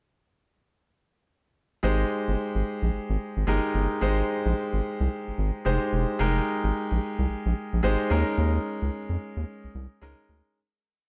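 R&B in a new jack swing style, this short, upbeat and flirty piece rides a swung sixteenth-note feel in 4/4. A round analog synth bass sits up front with a deep, dark, warm tone blending square, sine, triangle, sawtooth and wave-folded colours, playing a bouncy synth-funk line with muted ghost notes and chromatic approach notes. A clear concert grand piano, intimate and polished with audible action noise and long sustain, comps in drop-2 voicings with pushed chord rhythms just behind the bass in level. Both parts come in at 1.8 seconds over a verse that moves from Abmaj7 through Fm11 to Eb7sus4. The dry, close sound keeps the groove tight until a fade-out takes over from 8.4 seconds to the end.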